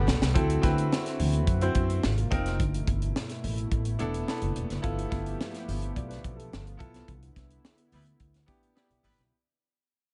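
A drum fill and band accent open this polished, glossy 1980s jazz-funk pop excerpt at 107 BPM in G major, where an up-front kit with a high-tuned snare and tight kick drives alongside a woody, thumpy pizzicato upright bass, a natural grand piano, a smooth, detuned sawtooth pad in the background and very quiet bright congas. The urban groove fades out through D7, Ab69, G69 and G13 to a Cmaj9 band accent at 7.1 seconds, and a very quiet, clear horn section with octave doubling returns at 7.9 seconds.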